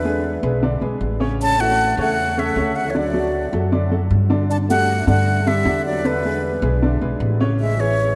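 A breathy, close-miked concert flute sings the melody from the very start of this sophisticated, fiery jazz fragment, joined at once by a veiled, bucket-muted trombone drifting in the distant background with vibrato and scooped notes, a boxy upright piano with short sustain comping through changes from E7 to Amaj7, and a woody pizzicato upright bass up front, all bathed in the long, echoing wash of a vast cathedral reverb.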